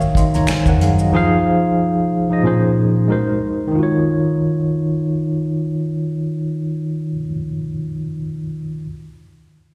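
Smooth and late-night, this R&B and neo-soul fragment opens with a brief flash of maracas and finger snaps tucked in the background with slapback echo, an up-front acoustic drum kit with bundle sticks and a punchy kick, and woody pizzicato upright bass, and these three fall away by 1.1 seconds. A worn, slightly out-of-tune tine electric piano, lightly overdriven with medium tremolo through a combo amp, sounds from the very start and carries on alone until 8.9 seconds, moving from Ebm9 through Fm7, Bbm11 and Ab7 over a swung sixteenth-note feel. The sound sits in light reverb and small room ambience, heard as a live gig through the venue's PA with recital hall reverb.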